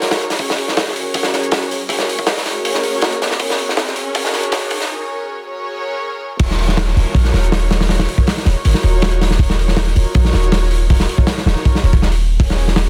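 Dense and heavily limited with light small-room reverb, this nostalgic, atmospheric drum and bass piece at 160 BPM in Eb minor opens with an intimate, sul tasto chamber string section holding sustained Gbadd9 chords over a crunchy, gritty, saturated breakbeat kit with dark cymbals and a tight kick up front, while an electronic riser and downlifter sit in the background from 1.3 seconds, and after a brief break the drop at 6.4 seconds brings in a deep, boomy 808-style bass with a sine tone and noise layer under an Ebm7 chord.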